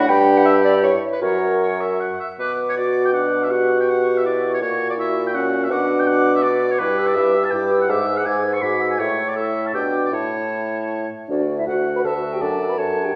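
In a quick, rubato 3/4 at 163 BPM, this cheerful, spirited classical-period movement for wind quintet opens in B minor and turns to D major at 6.8 s, cut from a longer piece. An airy silver concert flute with crisp attack carries the melody over a clear oboe second line with light vibrato, while a French horn with a smooth, warm top and a clarinet set in the background supply the accompaniment. A mellow, vintage-toned bassoon sits up front on the bass, and the whole quintet is heard from further back in a reverberant recital hall.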